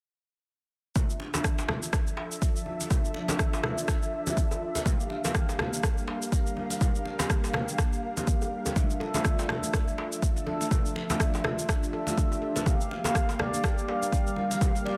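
An overdriven, deep electronic kick sits up front of a swung afro house groove, with tape-toned electronic cabasa and rim click, roomy congas played with hard hands and a tight, cracking djembe in the background, all creating a hypnotic, earthy pulse. Round, detuned synth brass stabs with chorus, vibrato and tape echo float over an ethereal, airy pad holding sustained minor chords, both pumping against the kick, while an analog polysynth carries a filter sweep throughout. At 8.9 seconds a ringing, meditative handpan enters with close, dry arpeggios, all within a lightly reverberant studio ambience.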